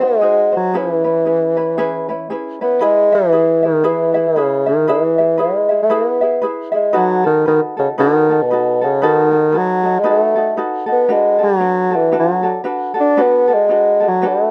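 Hawaiian music with a dreamy, languid swing in 4/4, this short excerpt pairs a dark bassoon melody in classical style, smooth on top and touched with light vibrato, against a gently thumb-plucked acoustic ukulele, both heard up front throughout. The harmony drifts from G#7 and C#m7 into a longer passage from 2.8 s that settles on E before moving through B7 and Bm7. Close, detailed miking and light reverb give the pair an intimate, softly glowing sound.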